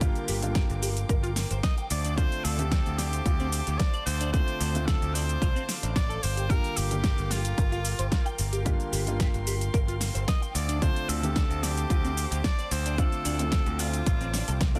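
A dense, heavily limited and nearly dry mix carries this sensual, cosmic nu-disco excerpt in G minor at 111 BPM, where an up-front overdriven punchy kick and a layered kit with fat snare, metallic hats and cabasa play alongside a bright picked electric bass, while a warm, intimate baby grand piano, a dark, clean semi-hollow guitar riff with ensemble chorus, and distant, floating chamber strings pumping under sidechain sit in the background as an edgy, forceful tenor saxophone with scooped notes, vibrato and digital delay takes the melody from 1.6 seconds over Gm7 and Dm7.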